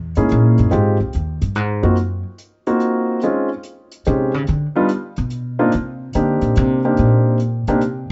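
A swung waltz at 144 BPM in 3/4 sets a moody, cool jazz piano trio fragment in C minor, lasting about 8.1 seconds and cut from a longer piece. The upright bass opens at 0.0 seconds and carries a solo throughout, its pizzicato steel strings sounding woody, growly and thumpy up front, ranging from C2 to D3. From 0.2 seconds a grand piano joins on melody between G3 and G#4, intimate and natural with long sustain, audible action noise and a touch of plate reverb. Brushed hi-hat sits in the background, airy and polished in a small-room sound. The harmony moves from F#13 through Fm7, F#maj7#11, Dbmaj7sus2 and a rootless G before settling on Cm9, all under light reverb and a dark, rolled-off top end.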